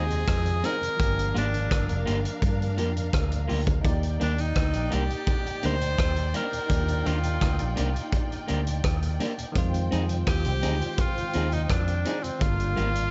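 Lightly reverberant small-room sound with a rolled-off top frames this smooth, romantic lovers rock reggae fragment in Eb major at 84 BPM, moving through Fm7, Gm7 and Ebmaj7. A clear tenor saxophone with light vibrato and tape echo carries the melody, shadowed by a lush, woody string section in the background, also touched with tape echo. Underneath, a round, foam-muted fingered bass and a punchy vintage kit of kick, hi-hat and rim click drive the groove, while a slightly broken-up guitar plays stabs, a barky, bell-like tine electric piano comps, and a very quiet, flute-like tonewheel organ turns through its rotary speaker.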